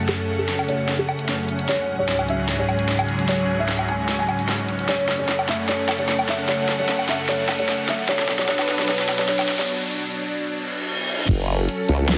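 Menacing and aggressive, this half-time heavy wobble dubstep build-up sets a muffled, felt-muted upright piano melody with dub echo against a bright, detuned supersaw pad with phaser and sidechain pumping, distant bowed symphonic strings, a very quiet riser and reverse cymbal, and an overdriven dubstep drum kit with a huge snare, before a break at 9.7 seconds gives way at 11.3 seconds to a knocking electronic kick and an up-front sawtooth formant-sweep wobble bass, all heard through lush hall reverb and a heavily compressed, radio-like sound.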